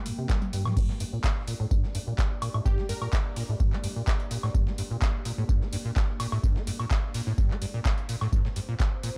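A squelchy, resonant acid bass sits up front, its overdriven sawtooth riff pumping in G minor through this gritty, trippy acid house excerpt at 127 BPM, with a deep, tape-warm electronic kick driving beneath it and a booming analog drum machine adding metallic hats, handclaps, toms, woodblock and a crash, opening with a drum fill at 0.3 seconds. A moody, detuned pad holds sustained Gm chords in the background, while a compressed, sampler-style breakbeat kit with a high-tuned snare, hats and tambourine sits filtered and pumping behind. A bright, punchy unison lead flashes briefly at 2.7 seconds through phaser and digital delay, all within a dry, dark production.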